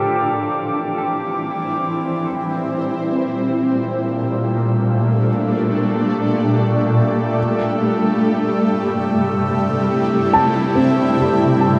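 A bright, shimmering pad sits up front in this spacious, melancholic ambient excerpt in free time and G dorian, holding sustained chords through chorus and phaser while Am7 gives way to Gmadd9 and then Am7/G. A twangy, fingerpicked pedal steel guitar line with lush chorus and delay opens the piece but is gone by 1.4 s. A glassy glass harmonica hovers high in the background, and from 2.3 s it and a thick-felt, muted upright piano with audible action noise and delayed arpeggios fade in, all drifting in a dreamy mix soaked in a huge, long reverb.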